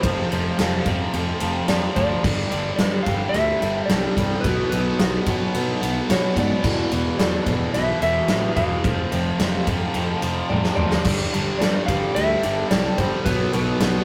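A huge arena drum kit anchors this cut from a longer anthemic, cathartic quiet-loud alternative rock piece, its acoustic sound carrying a big-room feel, a medium-tuned snare and a punchy kick, with crash, ride and toms filling out the straight 4/4 groove at 109 BPM in G mixolydian. Up front beside it, an overdriven semi-hollow guitar plays a double-tracked, picked riff with a bright, hollow-bodied edge and a phaser on it. Further back, a double-tracked high-gain guitar doubles that low riff register with heavy distortion. A fuzzed, overdriven electric bass adds a warm, driving low end. Above them, a dark, clean, fingered electric guitar carries the melody. A short drum fill at 10.5 seconds marks the return of the main section at 11.0 seconds, the chords cycling through F5, G5, B5 and E5, all caught in a rough rehearsal-room recording with tube saturation and a moderate small-room reverb.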